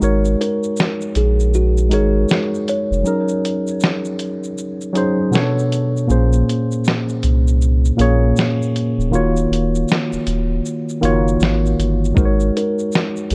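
A laid-back 79 BPM groove in 4/4, swung on the sixteenths, sets the pace for this hazy, reflective lo-fi hip hop excerpt cut from a longer piece. The sampler-style drum kit sits up front with a thumpy kick, a fat snare, hi-hat and shaker, all compressed and muffled under vintage 12-bit grit. Beneath it, a soft dub sub bass holds a deep, round tone with a fast attack and sustained notes. A worn, slightly out-of-tune tine electric piano carries the harmony through a low-pass filter, moving from Ab7sus4 through Gb6 and a run of minor ninth chords before returning to Ab7sus4. A woody, ringing kalimba plucked by thumb adds brief melodic phrases from 0.4 to 3.4 seconds and again from 12.6 seconds, softened by a low-pass filter and trailed by analog delay. Digital ambience gives the whole production a dark, warm glow.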